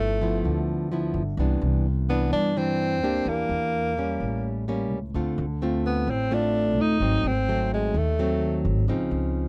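Relaxed and sophisticated, this short bossa nova fragment, cut from a longer piece, moves at 128 BPM in a straight 4/4. A breathy tenor saxophone carries the melody up front, its jazz-style solo line marked by vibrato, scooped notes, a punchy attack and a smooth top, before it stops at 8.7 seconds. A fingerpicked nylon-string guitar, also up front, supplies classical-style accompaniment with a warm acoustic tone, while a pizzicato upright bass adds a woody, dark low end. The harmony travels from G13 through Cmaj9, Em7b5, A7b9 and Dm7 to G#7b9, landing on C#maj9 at 8.9 seconds. Light reverb sits on a dry, close studio sound with a 1970s character.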